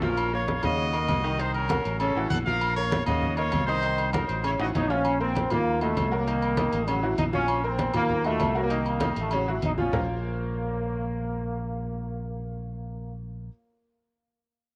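Fiery and driving, this salsa fragment at 197 BPM in Bb harmonic minor opens with a drum fill as a bright, punchy trumpet section carries the melody over a worn, woody, slightly detuned upright piano, an up-front fingered electric bass, soft-handed low-tuned congas, and ringing metal-shell timbales with agogo bells, before a smooth-topped trombone section with light vibrato takes up the tune at 4.8 seconds and the percussion drops out at 10.0 seconds, all set in moderate spring reverb with the lossy grain of a home cassette recording.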